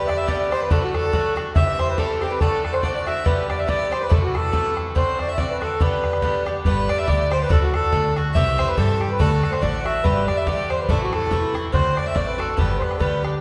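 A swung 2/4 Celtic polka bounces along at 141 BPM in G major, rollicking and lively, with a boomy, close bodhran driving it and a metallic, double-strung Irish bouzouki picking the accompaniment under a simple G, D, C and Am progression that resolves through D7. Up front, a reedy, round accordion carries the melody while a nasal, earthy fiddle with light vibrato plays a second line from further back, joined by a plunky fingerpicked open-back banjo that is barely audible. A woody, thumpy pizzicato upright bass enters at 6.7 s as the tune repeats, and the whole passage, cut from a longer piece, sits in a lush hall reverb with a soft, rolled-off top end.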